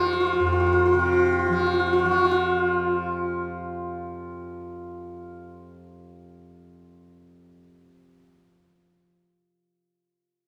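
Set in a straight 7/4 at 108 BPM, this radiant, serene Indian classical excerpt opens with a hammered santur carrying the melody up front, its ringing, shimmering tone floating over a softly plucked, buzzing tanpura drone. The santur falls away at 5.7 seconds, leaving the tanpura's warm hum to sustain alone until 9.1 seconds. A wet recital hall reverb lends the whole passage a gentle, spacious glow.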